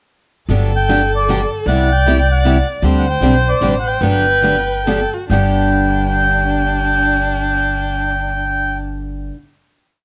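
Swinging and lively, this short, complete piece of acoustic string swing in 3/4 and G major moves at 132-154 BPM, with a reedy, rich accordion carrying the motif-based melody through plate reverb, a vibrato-laden violin weaving an expressive bowed counter-melody with portamento, a bright picked steel-string guitar marking every beat with short accents on two and three, and a woody pizzicato upright bass walking up between roots and fifths, as the tune slows from 2.8 to 5.3 seconds before settling on a final G chord in a moderate club reverb.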